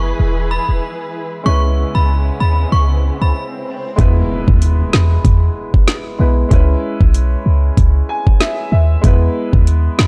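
A dry, gritty cassette-tape sound frames this tough, hypnotic dancehall excerpt, where an inharmonic FM synth chime with ensemble chorus and analog delay rings briefly over a clear concert grand piano and dark, distant bowed strings moving between E and C#m7. A clean, boomy 808-style bass sits up front throughout, and after an electronic swell in the background, an impact at 4.0 s brings in the electronic island pop drum kit with its knocking kick, woody snare and metallic hats. The grand piano adds a fill at 7.8 s.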